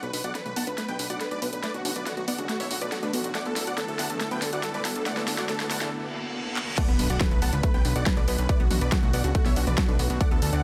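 A driving, straight 4/4 pulse at 140 BPM in B minor carries this bittersweet uplifting trance excerpt, where a build-up of drum fills, a background riser, a reverse cymbal and a filter sweep on the lush, detuned unison pluck arpeggios gives way at 6.8 seconds to a drop with an impact and an up-front, punchy, overdriven electronic kick. Over Bm7 and D6 chords, a huge, airy supersaw melody with vibrato, dub echo and sidechain pumping soars above a silky, string-like pad with ensemble chorus and a fat, saturated sawtooth bass. The overdriven big-room kit adds a huge snare, handclaps, hi-hat, toms and crash cymbal, all set in light reverb.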